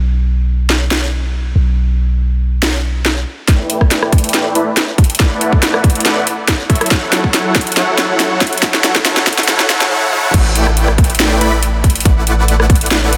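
A deep, boomy 808-style bass with a sine core and a noise layer opens this bittersweet, emotional future bass excerpt at 140 BPM. It moves in a half-time, lightly swung feel and is soon joined by an up-front trap kit of sharp snare, metallic hats, rim click and crash. At 3.5 seconds, lush, detuned supersaw chords and a hard-clipped electronic kick arrive for a build-up, with the chords pumping under sidechain, trailing dub echo and carrying a filter sweep over A7sus4 and F#m7 while a drum fill runs beneath. The bass returns for the drop at 10.3 seconds, and the whole piece sits in a huge ambient reverb and a dense, heavily limited master.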